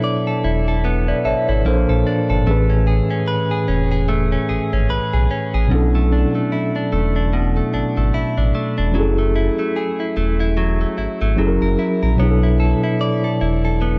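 Moody and full of longing, this contemporary R&B piece moves at an unhurried 74 BPM in 4/4, with a 58% swing on the sixteenths and a B dorian center, tuned to A4 = 436 Hz. A mellow tine electric piano carries the accompaniment through built-in speakers, its clean tone spanning A2 to E5. Alongside it, a direct-recorded clean electric guitar plays picked, compressed arpeggios up front, treated with spring reverb and tape echo. At 0.4 seconds a deep, full sine sub bass with an added octave enters, sustained with a fast attack and sitting up front in the low register. The harmony drifts from Bm11 through A#maj9 and Amaj9, returns to Bm11, and touches F#7 at 11.4 seconds before settling back on Bm11. The sound is dry and gritty, set in a digital ambience with transformer saturation, and the passage is cut from a longer piece.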